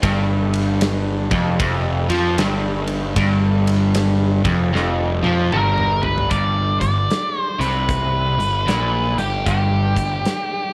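Blues rock in the power-trio mold, with a southern rock swagger, this short cut from a longer piece has a raunchy, strutting mood and a swung 4/4 feel. A crunchy, double-tracked electric guitar riff sits up front over Fsus2, joined below by a round, fuzzed and overdriven picked bass that blends direct and amped tone. A huge acoustic arena kit drives it from the start: a punchy kick, a medium-tuned snare, bright cymbals across hi-hat and ride, and toms, all set in a pumping hall sound. A drum fill from 4.7 to 6.3 seconds carries the music into a second section on G. From 5.5 seconds, a dark octave-fuzz lead guitar enters up front with a distorted melody and slapback echo, over a generous studio reverb.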